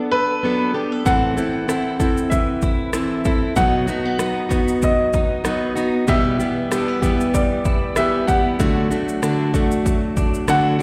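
Acoustic pop in a tender, wistful mood, this live excerpt heard through a venue's PA opens with a full-bodied, fingerpicked steel-string acoustic guitar up front, a bright, compressed clean electric guitar playing arpeggios with ensemble chorus, and a woody upright piano carrying the melody with long sustain and tape echo. A punchy analog drum machine joins at 1.1 seconds with kick, rim click and shaker, its tape-warm sound sitting forward. The guitars and piano share plate reverb and slapback echo in a moderate club room with recital hall reverb, over a lightly swung sixteenth-note feel and chords moving from D6/F# through Am, B, Em and D.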